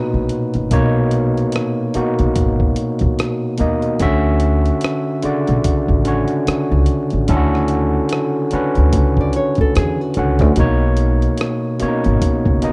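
An overdriven tine electric piano, barky and up front through a combo amp, carries Bmaj9 and Dmaj9 chords in this sensual, soulful neo-soul excerpt at 73 BPM with a swung 16th feel, over a woody, dark pizzicato upright bass and a dusty, tape-warm sampler-style kit of thumpy kick, hi-hat and rim click re-recorded in a large room, while a small fingerpicked nylon-string guitar adds a brief second line from 9.2 to 10.6 seconds in a rough home-demo mix with digital ambience.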